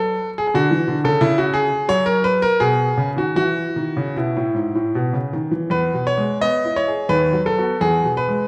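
A clear, intimate grand piano plays alone in this short, serene, dance-like passage from a baroque-style suite movement, moving in a flexible, rubato three-beat lilt. The harmony passes through D and B before settling onto E at 5.7 seconds, where a new section begins and then closes on E again. The instrument sits up front with a natural tone and audible action noise, framed by a moderate concert-hall reverb.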